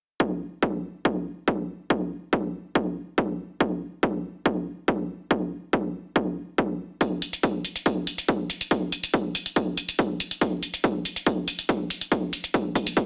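Hypnotic and industrial, this straight 4/4 techno fragment at 141 BPM opens at 0.2 seconds with a heavy, layered electronic kick drum, overdriven and high-pass filtered and sitting up front, until an analog, tape-warm electronic hi-hat joins at 7.0 seconds with sidechain pumping, all set in a digital ambience under a dense, heavily limited modern master.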